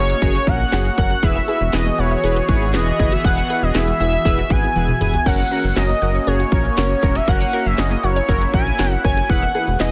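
Bright and wistful, this short synth-pop excerpt is led by a bold, retro octave-doubled lead with vibrato, sitting up front with chorus, digital delay and shimmer reverb. Beneath it, fat, nasal analog synth brass and a sweeping resonant pad in the background carry the chords, while a squelchy, very quiet resonant blip pluck spins arpeggios. A round analog bass and a punchy house drum kit with a cracking snare and crisp hats drive the groove, with a drum fill at 4.8 seconds, all in a dense, heavily limited modern mix.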